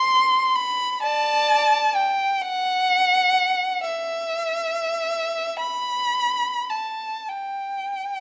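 A dark, warm recital-hall sound with moderate reverb frames this brief, nostalgic excerpt of a lyrical classical piece for unaccompanied violin in G major, where a single rich, up-front violin sings bowed lines between D5 and C6 with vibrato, soft attacks and expressive portamento, drifting freely in a rubato 6/8 at roughly 32-45 BPM for 8.2 seconds.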